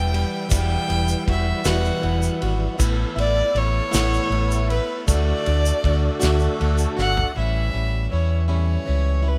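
A rough home demo mix with small room ambience gives this reflective, dusty folk rock and heartland rock excerpt an unpolished, close feel in 6/8. A rich, focused fiddle carries the melody with light vibrato and a touch of digital delay, while a boxy, freshly strung plugged-in acoustic guitar picks a swing-style accompaniment beneath it. A tonewheel organ holds full, clean chords through a slow rotary speaker and chorus vibrato, and a dark, round fingered electric bass sits up front in the mix. A damped 70s drum kit with a fat snare, tight kick, ride cymbal and toms keeps a dry, mid-forward pulse alongside a grainy, bright egg shaker. The drums play a fill at 7.0 seconds, after which the organ, drums and shaker drop away, leaving fiddle, guitar and bass on an A7 chord until the clip ends at 9.4 seconds.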